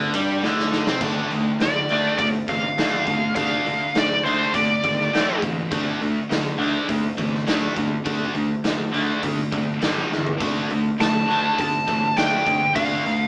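This excerpt of driving, menacing hard rock in D minor at 102 BPM opens with two picked rhythm guitars on the riff, one a cranked stack with overdrive and phaser sitting in the background, the other scooped and high-gain, over a growly, fuzz-laden picked bass and a big, natural-sounding acoustic kit with a punchy kick and medium-tuned snare that plays a fill before the band lands on Dm at 1.0 seconds. A bright, distorted lead guitar sits up front with a high melody from 1.6 seconds and returns at 11.0 seconds, while the harmony moves through A5, D5 and G5. The band plays live in one room with moderate studio reverb and a small speaker sound.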